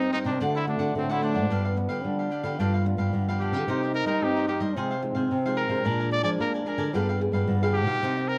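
Sunny and lively, this short samba excerpt moves at 110 BPM in a straight 4/4, with a breathy, punchy trumpet carrying the melody up front through a plate reverb while a mellow trombone, vibrato-laden and scooping into its notes, sings a jazz-style second line beneath it. Crisp picked cavaquinho and a small, thumb-plucked nylon-string guitar fill out the accompaniment, and a second nylon-string guitar, dark and full-bodied with audible finger squeak, sits up front on the bass line. The chords travel from D7 through Cm7 and Bb7 to a closing G7b9, all within a moderate studio room.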